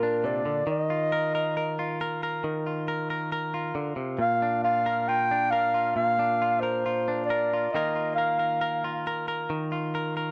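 A straight, unhurried 4/4 pulse carries this tender, intimate acoustic folk-pop ballad, cut from a longer piece, as a bright, twangy, direct-recorded electric guitar plays clean, compressed accompaniment, moving between Bb and Ebsus2. Up front and close-miked, a dark, breathy clarinet sings the melody in a whispered, jazz-style subtone, with vibrato, soft attacks and scooped notes and a slapback echo, before falling silent at 9.0 seconds while the guitar continues to 10.3 seconds. The sound is that of a dry, close 1970s-style studio recording with light reverb.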